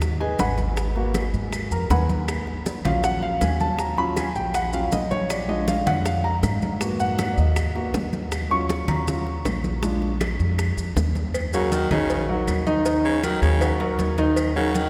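An up-front, intimate concert grand piano with audible action noise and deep bass solos over a fiery, driving Afro-Cuban jazz groove at 159 BPM in Eb minor, backed by a growly pizzicato upright bass, round low-tuned bongos and cowbell, ringing congas, distant woody claves and grainy maracas, before a raspy, close-miked baritone saxophone with vibrato takes over at 11.5 seconds, all bathed in the long reverb of a cathedral-like hall in this cut from a longer piece.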